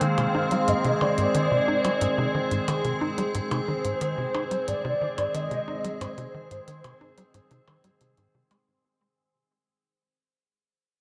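Expansive and luminous, this brief fragment of ambient, sequencer-driven space music sits in a dreamy mix soaked in a lush hall reverb, with a fade-out running from 1.6 to 8.7 seconds. A mellow, horn-like synth lead carries the melody with ensemble chorus and analog delay over an evolving, detuned wavetable pad that holds sustained chords through a phaser. Beneath them, a tight, punchy sequencer bass drives a nasal riff with analog chorus and delay, while clicky electronic hi-hats and percussion blips echo through analog delay.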